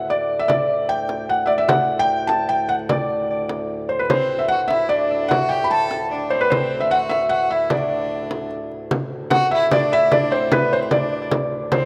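Festive and rustic, this medieval dance excerpt moves at 150 BPM in a straight 3/4 in D mixolydian. A soft, felt-muted upright piano carries the melody up front with audible action noise, over a ringing, fingerpicked concert harp in the background, a reedy, breathing pedal harmonium drone and a small, bright frame drum played close and dry with soft hands. A clear, bowed fiddle with light vibrato joins from a distance at 4.1 s, a new section begins at 8.9 s, and the whole rough home demo mix sits in a wet plate reverb.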